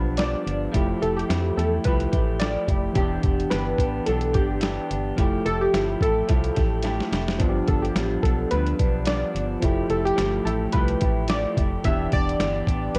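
A hazy, nostalgic stretch of indie bedroom pop opens with round, detuned sawtooth keys carrying the melody, bathed in lush chorus and tape echo, over a lightly broken-up electric guitar from a small old amp that warbles with subtle chorus and pitch drift. Beside it, a barky, gritty tine electric piano pushed through a combo amp fills out the harmony, while a hollow, organ-like FM bass with a fast, decaying attack sits dark and low. At 0.2 seconds a compressed, pitched-down sampler-style drum kit joins up front, its thumpy kick, medium-tuned snare and hi-hat muffled and overdriven. The loose, lightly swung groove drifts through a dreamy cycle of G7, Fmaj9 and Em7, and a drum fill at 6.8 seconds marks the turn back to G7. Cassette tape colours the keys, guitar and electric piano, and the dry, close home-recorded sound makes it feel like a fragment lifted from a longer piece.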